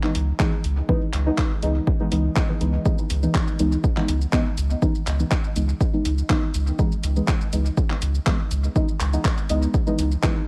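A deep, mellow chord stab opens this dub techno excerpt together with a deep house drum kit of handclaps, hi-hat and shaker, setting a hypnotic, straight-ahead groove in four. The stabs voice a single minor ninth chord, soft and dark with a folded, triangle-and-sawtooth edge, coloured by chorus and phaser, pulled by sidechain pumping and trailed by dub echo. A round, sine-based sub bass arrives at 0.2 seconds, sitting up front with a fast attack and sustained body that also pumps with the sidechain. From 0.4 seconds an overdriven electronic kick hits punchy and layered, while the quieter kit, also overdriven, carries its own dub echo and the boxy character of a small room. The overall mix stays dry and close, giving the stabs, bass and kick a direct, present feel.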